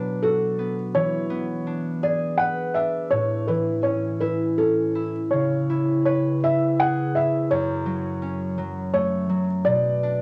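Swaying in a gentle three-beat metre at about 83 BPM, the rhythm stretches and relaxes freely, giving this children's lullaby a tender, sleepy lilt. A felt-muted upright piano carries the melody in a modest upper register, its tone soft, dark and intimate, with a thick, cushioned quality that sits close to the listener. Beneath it, a concert harp supplies fingerpicked accompaniment that rings from the low bass up into the middle range, with a cassette-tape colouring to its sound. Both instruments play together throughout this short cut from a longer piece, moving from Bm through E7 and A before a second passage begins around 5.3 seconds, turning through C#m7 and F#m and returning to Bm near 9.7 seconds. A moderate spring reverb and small-room ambience lend the whole a cosy, homemade feel, like a lullaby captured on tape in a quiet bedroom.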